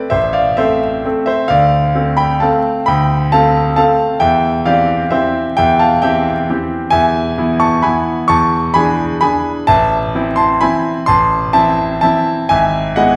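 A bright concert grand piano plays alone throughout, performing a sparkling, elegant classical waltz in three with uneven, rubato beats, its brilliant upper register set against a deep bass. The piano sits up front in the mix, yet the wet recital hall reverb places the listener further back in the room, and a vinyl crackle runs beneath the playing. Around 6.9 s the harmony turns toward E, and this short section from a longer piece closes on an E/G# chord, cut off at 13.2 s.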